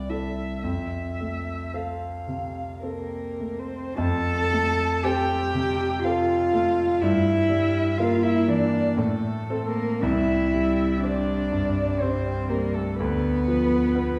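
Tender and lyrical, this fragment of a slow romantic piano-trio movement in F major unfolds in a rubato 3/4 at 50-63 BPM, with a dark, woody, distant violin singing the melody with vibrato above a close, intimate cello second line played sul tasto with an airy bow, soft attack and light vibrato, while an up-front concert grand, clear with deep bass and audible action noise, supplies the accompaniment, all three sounding together throughout, heard from further back in a reverberant recital hall.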